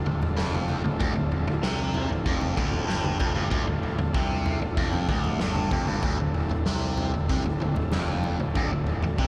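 A buzzy combo organ with heavy vibrato holds sustained chords in the background as a biting, double-tracked overdriven guitar opens this dark, mysterious psychedelic rock excerpt in D minor. The guitar's picked riff sits up front, colored by phaser and analog delay, while a round, fuzz-laden picked bass with its own overdrive sits further back. A raw garage drum kit joins almost at once, gritty and saturated, with a fat snare, a punchy kick, toms and a rolled-off top. Close, dry congas played with soft hands ring faintly beneath, barely audible. At a steady 96 BPM in 4/4, the groove begins on a D minor chord, with a drum fill from 5.2 to 6.0 seconds. Light reverb and small room ambience round out the echo-heavy mix.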